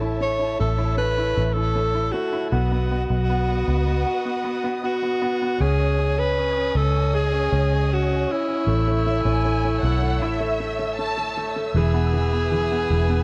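Hopeful and tender, this excerpt from a pop ballad moves at an unhurried, straight 4/4 pace. A clear, polished baby grand piano carries the accompaniment while a distant, lush studio string section holds sustained chords with expressive vibrato and portamento. Underneath sits a vintage muted electric bass, dark and round, placed up front in the mix. A breathy alto saxophone enters at 0.2 seconds with the melody, close-miked and whispered, intimate in its soft attack and vibrato. At 9.1 seconds a symphonic violin section adds a smooth-topped second line until 11.5 seconds. Light reverb and studio ambience surround the parts, and a worn cassette tape quality lends the whole a warbling pitch drift.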